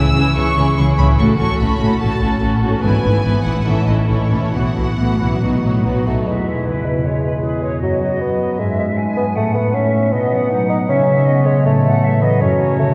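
Cheerful and graceful yet dramatic, this fast romantic orchestral passage in straight 4/4 is cut from a longer piece and set in a church acoustic with a long, wet reverb that places the listener further back in the room. For the first 6 seconds the strings carry it: a violin section sings the melody with smooth, even vibrato, a second violin section adds a soft-attacked, lush second line, and violas with expressive portamento fill in the accompaniment behind them. Beneath, a focused cello section and a rich double bass section hold the bass, while a mellow concert harp rings out thumb-plucked arpeggios across the whole passage. Around 5.9 seconds a mellow solo bassoon steps up front with its accompaniment, and at 6.3 seconds the strings give way to the woodwinds, as an airy, close-miked flute section and a bright solo clarinet take up second lines over the harp. The harmony moves through minor and major colours, settling on E at the start of the woodwind passage before closing on F#m.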